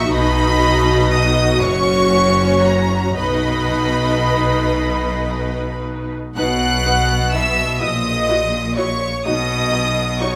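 Lyrical and warm, this is a slow romantic movement for string orchestra in 6/8, played with a free, rubato feel and cut from a longer piece. The first violins carry the melody high in their range, their tone rich and smooth with vibrato and placed up front. Beneath them a second violin section sings a softer line, intimate and close, with light vibrato and a gentle attack. Violas fill the middle with a lush, even accompaniment, while cellos and double basses share the bass, the cellos clear and lightly vibrant and the basses focused with a smooth top. All five sections sound together from the start, with a new section beginning at 6.4 seconds, and a recital hall reverb wraps the ensemble in a soft, lingering glow.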